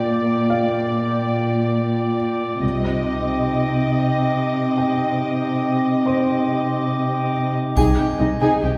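A pure, glassy glass harmonica holds sustained chords through this ominous, uneasy fragment of a suspense film score, moving at 70 BPM in 3/4 in C minor. Beneath it, the cello section sits up front with a dark, veiled bass line, while a con sordino violin section carries a lush melody with vibrato. A felt-muted upright piano adds very quiet, mellow texture with audible action noise. The double bass section enters briefly at 2.6 seconds as the harmony moves to Cmadd9. At 7.8 seconds the piano stops and the closing passage thickens under an Abmaj7/C chord: a second violin line set in the background, a smooth-topped studio viola section, heavy-stick taiko drums that sound compressed and saturated, a close triangle, and the returning double basses. A concert hall reverb with a 2.3-second decay places the ensemble further back in the room.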